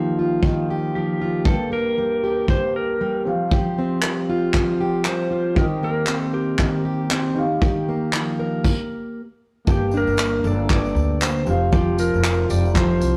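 Tender and reflective, this swung acoustic pop excerpt pairs a full-bodied fingerpicked steel-string guitar with a soft felt-muted upright piano in the background, brushed drums with a punchy kick and dark cymbals from 0.4 seconds, and a dark lap steel melody played with slide and fingerpicks from 1.0 seconds, before a brief stop gives way at 9.7 seconds to a woody pizzicato upright bass and a faint jingly tambourine, all caught in a rough rehearsal-room recording with tube saturation and light reverb.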